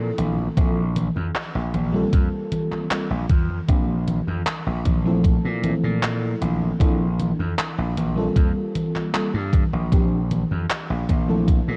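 Vaporwave at 77 BPM in Bb lydian, this faded, nostalgic excerpt from a longer piece sits on a dark, soft, round FM electric piano with chorus, tape echo and a noise layer, cycling Fmaj7/Bb, Dm9/Bb, Gm11/Bb and Bb69 over a steady Bb foundation. A gritty, overdriven slap bass sits bright and punchy up front, beside a thumpy electronic kick that enters at 0.6 seconds. A detuned 8-bit drum machine adds tape-warm congas, handclaps and hi-hat re-recorded in a large room, and the whole recording carries light reverb and a cassette-tape haze.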